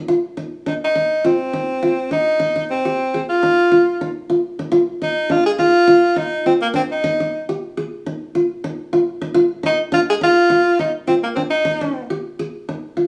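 Defiant and driving, this short afrobeat excerpt moves at 104 BPM in 4/4 with a 16th-note swing, set in F dorian over an opening F7(no3) chord. A plectrum-plucked qanun, warm and bright-edged with its triple strings, plays arpeggios up front throughout, while a clear tenor saxophone enters at 0.7 seconds with a pop-style solo melody full of vibrato, standing forward until 12.0 seconds. The band sounds as if playing live in one room with a small room ambience, wrapped in a moderate large-studio reverb, and the passage shifts into a new section at 4.7 seconds.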